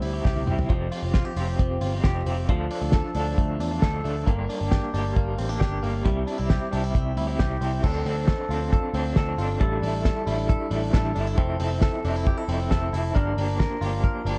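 A straight 4/4 pulse at 135 BPM drives this breezy, youthful jangly indie pop in F major, where a cloth-damped, thuddy drum kit with a fat snare, tight kick and vintage 12-bit sampler grit opens with a fill at 0.3 seconds and sits up front beside a round, foam-muted picked bass, while a slightly broken-up, lo-fi guitar through a small old amp adds tremolo accompaniment and a bright, twangy direct-recorded clean guitar plays arpeggios through a lush chorus, the whole set in light reverb and a dark production.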